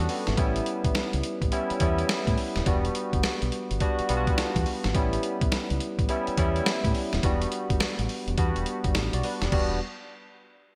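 A swung sixteenth-note groove at 105 BPM in 4/4 drives this bouncy, slick new jack swing excerpt in E dorian, cut from a longer R&B piece. A sampler-style drum kit with a thumpy kick, medium-tuned snare, hi-hat and crash sits up front, sounding gritty and compressed and treated with gated reverb. Underneath, a deep fingered electric bass plays dark, round and punchy lines, direct and amped, from D#1 up to A2. A barky tine electric piano, bright and lightly overdriven with analog chorus, carries the accompaniment from G3 to D5, alternating A7 and Em7 chords. The bright 1980s-style digital production wraps the parts in a lush hall ambience with a 2.0-second decay, and the excerpt moves into a new section at 9.5 seconds just before the instruments stop.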